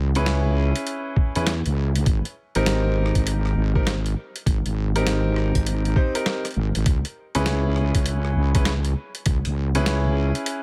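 Glitch hop at 100 BPM in 4/4 with a swung sixteenth-note feel, this gritty, funky excerpt moves from C#m7 to G#maj7 and back to C#m7. A heavy, wobbling bass with a sawtooth-and-sine tone opens the clip, sitting up front with saturation, overdrive and chorus in the low register. A bright grand piano plays stabs from 0.2 seconds, its brilliant, long-sustaining tone roughened by vintage 12-bit sampler grit, pumped by sidechain compression and trailed by dub echo. A pitched-down, tape-toned sampler drum kit brings hi-hat, rim click and a medium-tuned snare, while a thumpy electronic kick joins at 1.2 seconds and drops out at 9.4 seconds. The drums carry a small room ambience, and the overall mix stays dry and close.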